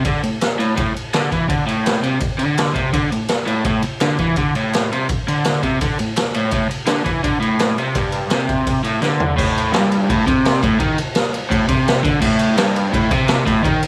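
A crunchy overdriven electric guitar, picked and double-tracked, sits up front, playing a low riff across the whole excerpt in a swaggering, raw garage rock groove at 168 BPM in straight 4/4. Beside it, a gritty, saturated drum kit with a boomy kick, medium-tuned snare, toms, ride and crash plays in a small room with a rolled-off top, and it rolls through a fill at 9.0 seconds into a new section. Very quiet, crisp group handclaps, close and dry, enter at 0.4 seconds, drop out at 9.1 seconds and return briefly near the end, all under a light reverb.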